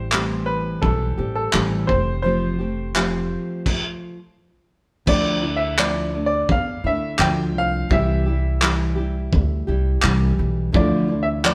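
Bathed in a wet stone-room reverb with the band playing live together, this sunny, easy-going acoustic pop piece moves at 85 BPM with a light swing, as a clear, polished upright piano carries the melody over a bright, fingerpicked nylon-string guitar, a woody, growly pizzicato upright bass and a muffled, gritty, thuddy drum kit of kick, crash and handclaps, the band halting for a stop from 3.7 to 5.1 seconds before a soft, felt-muted upright piano with audible action noise slips in at 10.7 seconds in the background.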